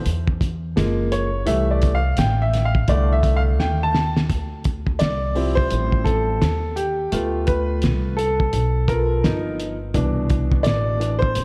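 A clear, woody upright piano and a thumpy pizzicato upright bass open this cool, nocturnal jazz-hop excerpt at 85 BPM in D dorian, joined at 0.1 seconds by a cloth-damped, muffled drum kit with a fat snare, tight kick and gritty saturation, all swinging on the sixteenths under light reverb as the up-front piano takes a smooth, long-sustained solo over chords like F#maj9, Dm11 and G7alt, with a drum fill at 3.6 seconds leading into the second section.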